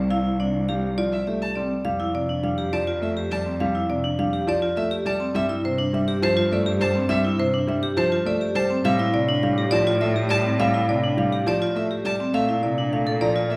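In a straight 3/4 at 103 BPM, this hypnotic, propulsive minimalist pattern piece in F major sets a woody, up-front marimba melody over ringing vibraphone arpeggios with fast motor vibrato, an intimate grand piano accompaniment with audible action noise, and a rich bowed cello bass. A clear, distant solo violin joins with its own arpeggios at 1.1 seconds, as the harmony moves through lush extended chords from F69 to G9sus4 and on to Bbmaj9. The recital-hall reverb gives the ensemble a church-like bloom, while the marimba stays close and dry, and the excerpt, cut from a longer piece, ends at 13.6 seconds.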